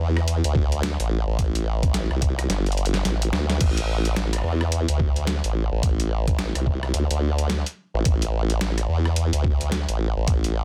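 Glitch hop with a swaggering, gritty attitude and a swung sixteenth-note feel, built around an up-front formant-sweep wobble bass whose sawtooth-and-sine tone wobbles through a formant filter, thickened by chorus and tube saturation. Beneath it, a pitched-down, tape-warm boom bap sampler kit of crash, hi-hat, rim click and medium-tuned snare sits beside a thumpy, compressed electronic kick, both in a dry studio ambience. A drum fill runs from 2.5 to 3.6 seconds, with the kick dropping out from 3.1 seconds, all pressed into a dense, heavily limited modern master.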